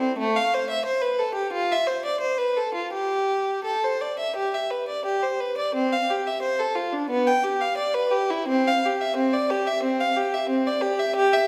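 A lone bowed violin opens at once, clear and focused with a singing vibrato, carrying a radiant, serene baroque-style suite movement in a loose, rubato 4/4 with gently uneven beats. The violin sits close and up front, while a wet recital-hall reverb heard from further back in the room lends a soft halo. Its opening passage returns at 5.8 seconds, and this fragment of a longer piece ends at 11.5 seconds.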